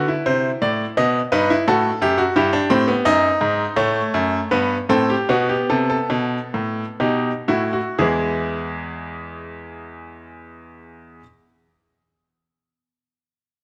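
A bright, polished baby grand piano carries this solemn yet driving baroque-style fugue in three voices, playing alone from 0.0 to 11.2 s across a range from E2 to D#5, in 3/4 at 58-87 BPM. The tempo slows between 2.0 and 8.0 s as the harmony moves through chords such as Am/C, B7 and Em/G, and a new section arrives on an E chord at 8.0 s. Close, detailed microphones keep the piano up front, set within a moderate concert hall reverb, and the passage is cut from a longer work.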